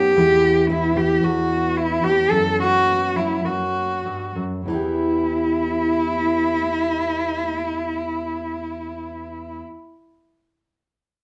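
A bowed cello carries the melancholic, haunting melody in this acoustic folk fragment in E minor, its soft attack, vibrato and portamento giving the line an expressive, singing quality. Beneath it, a fingerpicked steel-string dreadnought guitar supplies full-bodied accompaniment through Em and F#m7 chords, with both instruments up front even though the recording sounds as if heard from further back in a large, reverberant studio. Set in 4/4 with a straight feel at 95-114 BPM, the music slows from 0.2 to 4.7 seconds before returning to Em for a new section.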